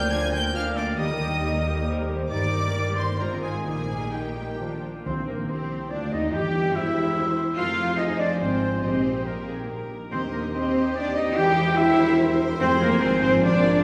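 In a rubato 3/4 at 127-148 BPM, this dramatic, restless Eb major excerpt from a fast romantic orchestral movement sets a clear, close violin section on the melody, while a hollow flute, a roomy oboe, a clarinet and a distant second violin section carry second lines alongside a rich viola section, a ringing thumb-plucked harp, and a cello section and focused double bass section on the bass. A very quiet bassoon accompanies until 4.8 seconds, mellow French horns add punchy sustained chords from 1.0 seconds, and at 5.1 seconds a tuba joins the bass as soft-mallet timpani strike a round, dry note. The whole orchestra sits in a wet concert hall reverb, with the harmony moving through C7 and F minor.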